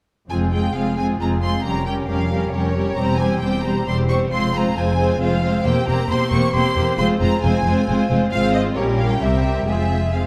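Restless and stormy, this brief extract from a quick classical-period movement in triple time for string orchestra sets a clear, focused first violin section high on the melody over a rich second violin line and close, vibrato-laden violas, while a smooth cello section sits in the background and an even, warm double bass section anchors the low end, each bowed within a dark production and a reverberant recital-hall sound.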